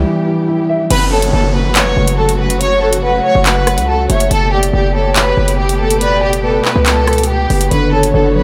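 Drill hip hop in F# phrygian at 141 BPM with a half-time feel, dark and tense, heard as a short cut from a longer piece. It opens with a brief break where a dark, boxy concert grand piano plays over a lush symphonic string section holding sustained chords and a heavy, punchy 808-style bass that sits up front. At 0.9 seconds the drill drum kit arrives with metallic hi-hats, handclaps, rim clicks and a crash cymbal, while a rich bowed violin section takes the melody with smooth vibrato and an electronic downlifter drifts in the background. A hollow, woody synth lead resembling a clarinet joins at 1.1 seconds as a second line, softened by chorus and delay. The piano returns briefly near the end as the chords move from F#m through Gadd9/F# to Bmadd9/F#, all set in light reverb with a small-room ambience.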